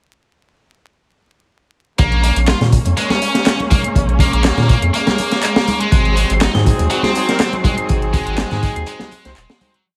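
A small room ambience and a layer of vinyl crackle frame this short, funky and raw breakbeat piece in B-flat minor, moving at 122 BPM in 4/4 with a light 16th-note swing. At 2.0 seconds most of the band drops in together: a crunchy, gritty acoustic break with a high-tuned snare and punchy kick, looped and edited, sits over a deep, thick saturated sub bass playing a skipping syncopated line. A tape-tinged analog drum machine adds closed and open hats and claps over the break, while close, dry congas ring in the background from 2.5 seconds. A bright, scooped high-gain electric guitar picks a distorted, repeating 32-step riff with tape echo, set against a dark, lush bowed string section holding sustained chords with expressive vibrato and a sidechain pumping effect. The harmony moves from Bbm7 to Ab7, and from 6.5 seconds a distant, roomy horn section joins with syncopated pop-style chord stabs carrying tape echo, just before the track fades out toward its close.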